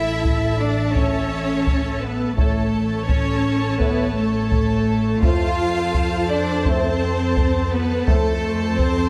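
Close, detailed microphones and light reverb frame this majestic, triumphant stretch of cinematic orchestral film score, cut from a longer piece. A lush, distant violin section carries the high melody while a focused second violin line, expressive violas, up-front cellos and vibrato-rich double basses fill out the bowed strings, and heavy-stick taiko drums enter at 0.2 seconds. From 1.0 to 8.3 seconds, soft-attack French horns and tight, vintage trombones sustain chords in the background, and the harmony shifts at 5.2 seconds.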